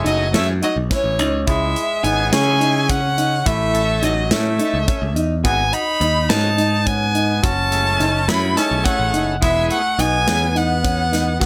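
This progressive instrumental cut from a longer piece moves in a driving, bright 7/8 at 211 BPM counted in eighths, with a straight feel. A rich, focused violin carries the melody up front with vibrato, while a raspy, growling alto saxophone plays a distant, roomy second line in a jazz style. A mellow, clean electric guitar, fingered and compressed, supplies arpeggios colored by harmonic tremolo, and a shouting tonewheel organ sits in the background with light overdrive, key click and a slow rotary speaker until it stops at 10.5 s. A modern picked electric bass sounds growly and direct at the front of the mix, and a tight metal drum kit enters at 0.1 s with hi-hat, a tight kick and a medium-tuned snare in a big room. The harmony moves through F#m7, C#m, A, G#m7, F#m7 and E under light reverb.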